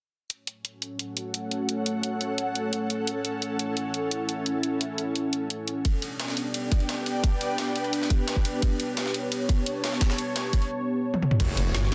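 A dense, heavily limited mix with light reverb carries this dark, aggressive technical drum and bass fragment, where a full-bodied, detuned sweeping resonant pad with chorus and a filter sweep opens over an up-front drum and bass kit of woody snare, bright hats, crash and toms, an ethereal airy pad with ensemble chorus drifts in at 0.9 s, a gritty, overdriven breakbeat sampler-style kit and a tight electronic kick join at 5.8 s, and after a drum fill a growling, distorted saw bass and a very quiet impact burst in at 11.4 s as the clip cuts off.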